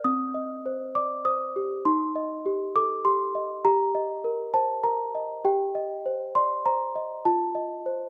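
A gentle, straight three-beat sway carries this dreamy, tender classical lullaby, cut from a longer piece, in which a small celesta plays alone throughout its 8.1 seconds, ranging from C4 to Eb6 over a minor-key progression that settles on F7. The celesta sounds bell-like and sweet, close-miked and full, sitting up front with medium felt hammers. The room is nearly dry, and the rough home-demo mix carries audible lossy compression artefacts.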